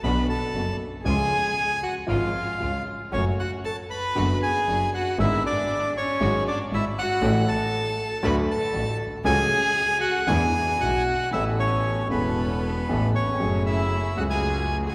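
Bathed in the long, wet reverb of a church, this passionate, nostalgic rubato tango fragment sets a reedy, up-front bandoneon melody over a close, expressive bowed violin line with vibrato and portamento, a woody upright piano accompaniment, a bright, distant bowed double bass with intense vibrato, and very quiet, dark sul tasto stabs from a studio string ensemble, moving into a new section at 11.3 s.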